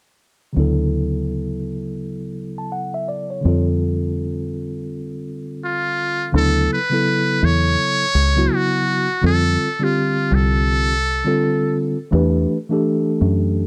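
This jazz-hop piece is relaxed and smooth, moving at 83 BPM in 4/4 with a swung 16th-note feel. A mellow tine electric piano carries the accompaniment from 0.5 seconds, with a clean, direct tone as it moves between Dmaj9 and F69 before settling on Em9. Beneath it, a deep dub-style fingered electric bass sits up front, dark, round and foam-muted with an amped character. At 5.6 seconds a trumpet with a metal mute enters for a jazz-style solo melody that is buzzy, thin and breathy, with light vibrato and a smooth top. The trumpet stops at 11.8 seconds, and piano and bass carry on to the end of this section cut from a longer piece, all captured in a dry, close 1970s-style studio sound.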